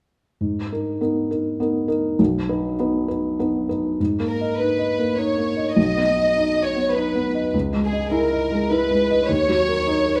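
A felt-muted upright piano opens at 0.4 seconds with soft, mellow accompaniment, its audible action noise sitting up front in a reflective, melancholic neoclassical piece in G# minor, moving at 102 BPM in a rubato 3/4. At 4.3 seconds a warm violin section enters with the melody, bowed sul tasto with light vibrato and a soft attack, close and intimate. Moderate reverb from a large studio surrounds the two parts as the harmony moves from G#madd9 and B toward C#madd9 and D#m in this excerpt cut from a longer piece.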